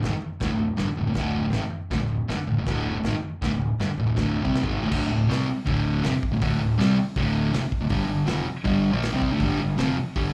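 A straight 4/4 pulse at 160 BPM drives this swaggering, raw garage rock cut from a longer piece, with a crunchy breakbeat drum kit of punchy kick, medium-tuned snare, hi-hat, toms and dark crash cymbal sounding gritty and rolled-off in a small room. An up-front, double-tracked fuzz guitar picks a distorted, compressed riff on a D5 power chord, shifting to a new section at 4.9 seconds and moving to G5 at 7.9 seconds, while an overdriven fingered electric bass sits in the background with a punchy low growl. The whole thing comes across as a live gig heard through the venue's PA, wrapped in light club reverb.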